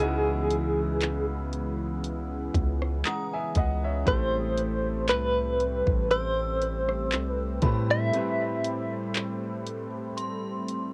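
Contemporary R&B at a slow 59 BPM with a late-night, moody feel, cut from a longer piece and moving from C#m7 to Am7 at 4.1 seconds. A clean, direct-recorded electric guitar carries the melody with tremolo up front, over an intimate baby grand piano with audible action noise, a thick, detuned unison pad with chorus, a deep sine 808-style bass, and an electronic kit of knocking kick, hi-hat, handclaps and rim click, while an inharmonic FM chime rings with tremolo and delay in the background. The bass stops at 8.1 seconds for a break, the guitar drops out at 9.9 seconds, and the whole home cassette recording carries light reverb and tape grain.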